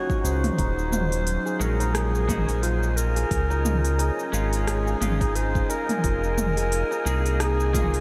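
A growling, raspy clarinet carries the melody in this mystical organic downtempo excerpt at 88 BPM in Eb dorian, its gritty, scooped notes drifting through delay and shimmer reverb over a round, deep analog bass, a deep electronic kick and a tape-warm electronic kit of smooth hats, rim clicks, shaker and toms with a gentle 16th-note swing. A ringing hammered santur plays arpeggios while a bright, clean semi-hollow guitar and a mellow analog pad sit in the background, both pumping with sidechain, as the chords move from Dbsus2 through Ebm and Dbadd9 to Fm7. From 2.5 seconds a very quiet, breathy wind-like tuned noise texture joins, and the whole dreamy mix is soaked in a huge ambient reverb.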